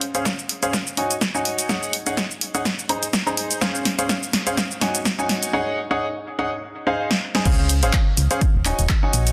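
A clear, worn grand piano sits up front in this soulful, energetic piano house cut, its short-sustained riff moving through sidechain pumping, a low-pass filter and dub echo over chords such as Dbmaj7, Ab7sus4 and Fm7. An overdriven analog drum machine with crash, handclaps, hi-hat, shaker and a punchy snare, the snare, clap and hats given a short room, joins an electronic kick with its own overdrive and high-pass filter to drive a swung, fill-heavy build-up. At 7.5 s the drop arrives with a round, dark FM bass of fast attack, all set in moderate plate reverb and a dense, heavily limited modern master.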